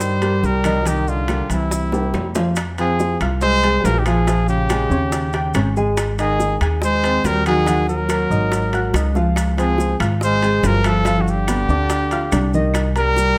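Close, detailed microphones and light reverb frame this driving, sultry Afro-Cuban jazz in F minor at 141 BPM, where an up-front trumpet with slapback echo carries a scooped, gently vibrato-tinged melody over a smooth-topped trombone second line, an intimate baby grand piano with audible action noise, a growly, thumpy pizzicato upright bass, round low-tuned bongos, ringing metal-shell timbales, grainy maracas and very quiet woody claves, with drum fills at 1.9 and 8.9 seconds.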